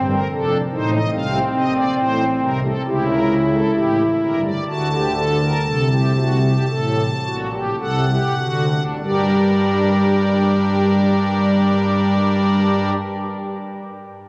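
In a straight 4/4 that slows from 73 toward 48 BPM over the first 9.0 seconds, this excerpt from a longer baroque-style three-part fugue in G minor moves in a contemplative yet driving mood, with harmony passing from F through A minor, C-sharp diminished seventh and D7 before settling on G minor at 9.0 seconds. A solo pipe organ plays from 0.0 to 12.9 seconds on its strings celeste stops, spanning F1 to A5 with a shimmering, soft sound and romantic voicing placed up front. The organ sits in a cathedral reverb with a 4.6-second decay, captured on a phone in the room with club reverb adding to the ambience.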